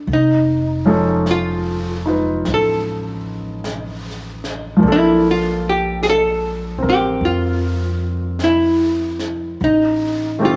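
A smoky, wistful jazz ballad at a slow 50 BPM with a swung feel, this brief excerpt cut from a longer piece moves through Faug7, Bbmaj7 and Am7b5 chords. An up-front, hollow-bodied archtop guitar carries the picked melody over a clear, intimate baby grand piano whose action noise can be heard, both parts colored by cassette tape, while a woody pizzicato upright bass and a faint brushed kit with a high-tuned snare and hi-hat enter at 0.1 seconds. Light reverb and small-room ambience give the home cassette recording a close, private feel.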